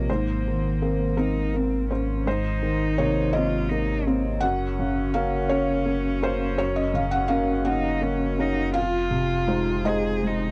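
The sound is dry and close, with little reverb, in the manner of a 1970s studio, and this short excerpt is cut from a longer neoclassical piece for piano and strings. The mood is longing and reflective, moving freely in rubato over a 6/8 metre. A felt-muted upright piano carries the accompaniment up front, soft and mellow with a thin-felt intimacy and its action noise plainly audible. A single bowed cello sings a dark second line sul tasto, with vibrato, a soft attack and a smooth top. Beneath them, a deep sine sub bass adds punch, each note opening with a fast, pitch-dropping attack before it sustains. The harmony drifts from Abadd9 to Gb at 4.4 seconds and settles on Fm7 at 8.8 seconds.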